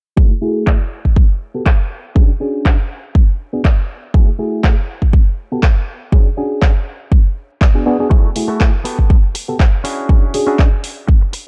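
Dark, warm digital ambience wraps this short cut from a longer filtered disco house track, giving it a sensual, funky mood with a gentle swing in the 4/4 groove. A punchy, layered electronic kick sits up front from the start, while a house drum kit adds handclaps and bright hats that pump against the kick under a filter sweep, and a close acoustic tambourine lies barely audible beneath. Carrying the harmony is a reedy, worn electric piano, slightly out of tune and heard as if through built-in speakers, coloured by phaser, 12-bit sampler grit and sidechain pumping as it cycles through F#m9, Gmaj9, Dmaj7#11/C# and G#m7b5. At 8.1 seconds a direct-recorded electric guitar enters with a twangy, scooped, compressed picked riff, sharing the same gritty, filtered, pumping treatment. The phrase turns toward E13 near the close, with the piano stopping at 10.7 seconds as the drums and guitar ride out the final moments.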